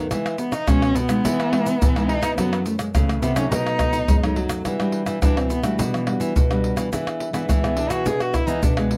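Bittersweet and yearning, this short cut from a longer samba and choro piece moves at 106 BPM in a straight 4/4, beginning in E major and turning to E minor at 4.7 seconds. A dark, bowed cello carries the melody up front, its expressive vibrato and portamento giving the line a smooth top, and from 4.7 seconds it takes a solo as the harmony shifts from Emaj7, F#m7 and B7 to Em9 and E7. Two classical nylon-string guitars play throughout, one fingerpicking the accompaniment with audible finger squeak and the other supplying the bass line from the background. Egg shaker, tight surdo, pandeiro and tamborim sit close, dry and up front, played with soft hands. A light reverb adds a touch of space, and the guitars' warm tone rounds out the intimate, acoustic sound.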